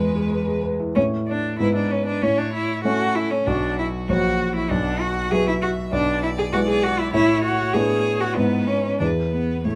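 A focused, vibrato-rich cello carries a smooth second line up front beside a polished concert grand piano with deep bass and short sustain, while a distant, even violin sings the melody in this lively, spirited fragment of a quick classical-period piano trio movement in a rubato 2/4, all set in light reverb.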